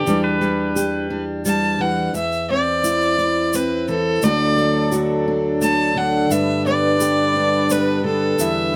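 Set in a gently rolling 6/8 with a straight feel, this acoustic folk passage, cut from a longer piece, moves at an unhurried pace and carries a gentle, warm mood. A single bowed fiddle takes the melody as a solo throughout, its focused, smooth-topped tone sitting up front with light vibrato. Beneath it, a fingerpicked steel-string acoustic guitar supplies the accompaniment with a concert-hall fullness, occasional finger squeaks audible through close, detailed microphones. A clean, compressed pedal steel guitar, played with fingerpicks and sliding with volume swells, adds a brief second line that drops out by 1.2 seconds, while a grainy, bright tube shaker ticks quietly and dry in the background. The harmony moves from Em7 to Cadd9/E, and at 4.2 seconds, as it arrives on D before settling on G, a reedy, breathing pedal harmonium enters with mellow sustained chords in a boxy small-room sound, filling out the harmony under light reverb.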